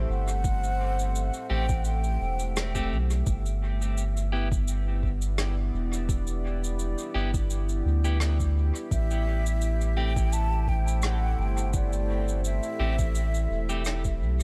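Hazy and meditative, this short cut from a longer ambient dub piece moves at 85 BPM in 4/4 with a gentle swing on the sixteenths, sitting in A dorian as the harmony shifts from Am7 to G6 at 3.3 seconds and back to Am7 at 8.9 seconds. A deep, dark pad holds sustained chords throughout, its sawtooth tones warbling with chorus and built-in reverb for a moody, vintage haze. Underneath, a round, soft sub bass sits up front, while an overdriven electronic kick gives the pulse a produced edge. A cabasa and rim click, played with brushes and rolled off at the top, add a small-room acoustic texture, and a clean, picked electric guitar drops stabs into a dub echo from 1.5 seconds. An airy, hollow concert flute with vibrato floats over the top in two phrases, the second returning at 8.9 seconds, its notes trailing into the same dub echo.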